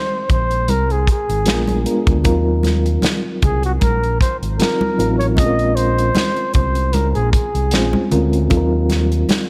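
Lush 1970s-style soul at 77 BPM in Eb dorian, cinematic and smooth, where a breathy, whispered flugelhorn carries the melody up front through analog delay until 8.1 seconds over a reedy electric piano with fast tremolo, a round, overdriven fingered bass, a punchy modern studio drum kit with hi-hat and snare, and ringing congas in the background, all in a small room with light reverb, moving through chords such as Ab9, Bb7b9 and Ebm69 in this short cut from a longer piece.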